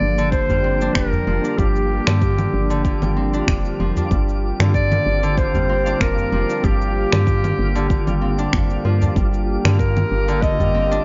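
A distant, roomy clarinet sings a soft-attack melody over a warbling, nostalgic pad with chorus and sidechain pumping, a bright fingerpicked Celtic harp ringing out arpeggios with tape echo, and a woody, round FM bass up front, all sitting on a Gm7 chord in this earthy, hypnotic organic downtempo excerpt with a gentle 16th-note swing. Within the first second a layered electronic kit of shaker, finger snaps and congas, a deep produced kick and a small, close udu in the background fill in the groove. A twinkling granular texture with an octave-up shimmer sparkles quietly behind everything, and the mix stays dark and lightly reverberant.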